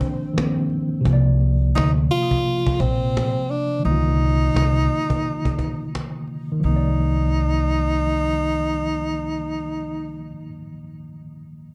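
Nostalgic and hazy, this lo-fi hip hop fragment, taken from a longer piece, sways with a lazy swung sixteenth-note feel. A clear, close-miked tenor saxophone sits up front, carrying a jazz-style solo melody in a narrow register with vibrato and a trail of tape echo. Beneath it, a worn, slightly out-of-tune tine electric piano lays down cassette-tinged chords through its built-in speakers, opening on a Cm11 and ringing on after the other parts have stopped. A woody cajon with faint snares and a live-room feel adds vintage 12-bit sampler grit before dropping out at 6.4 seconds. From 1.1 seconds, a growly pizzicato upright bass with steel strings anchors the low end, sitting a touch louder than the rest, all wrapped in a moderate studio reverb.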